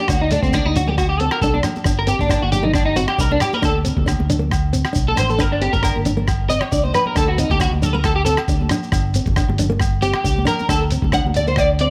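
Highlife guitar band in a warm, bittersweet mood, where an up-front, slightly broken-up electric guitar spins arpeggios through analog chorus and tape echo over a boxy fingerpicked parlour acoustic with audible finger squeak, a round amped fingered bass, a muffled, pitched-down sampler-style drum kit with thumpy kick, hi-hat and rim click, and grainy shekere, with ringing agogo bells and high-tuned congas in the background, all circling between G minor and D chords in a small room.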